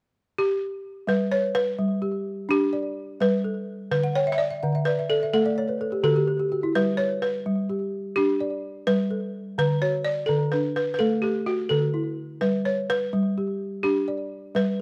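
A balafon struck with soft rubber mallets opens the melody at 0.4 s, its round, full, woody tone sitting close and up front in this hypnotic, flowing West African traditional piece in G lydian, moving at 85 BPM in a straight 12/8. At 1.1 s a second, buzzing balafon played with hard rubber mallets joins with dry arpeggios spanning D3 to G5, carrying a slapback echo as the harmony moves between G and D. A balafon fill arrives at 4.0 s, and the passage, cut from a longer piece, is heard through close, detailed microphones with light reverb.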